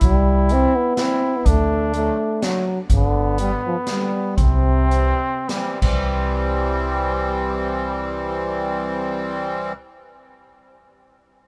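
Jolly and bouncy, this alpine folk dance-band excerpt moves in 3/4 at 92-126 BPM in C major, slowing down from 2.9 to 6.1 seconds as the chords pass from C through D and G back to C. An up-front euphonium, warm with vibrato and a smooth top, carries the classical-style melody until 5.5 seconds. A mellow trumpet with light vibrato plays the second line. From 0.5 seconds a reedy, sweet, airy accordion fills in the accompaniment with light tremolo tuning. A woody, thumpy pizzicato upright bass with steel strings holds the low end. A roomy street-band drum kit with a high-tuned snare, boomy kick, hi-hat and crash cymbal drives the dance until 6.0 seconds, and the overall sound stays close and dry.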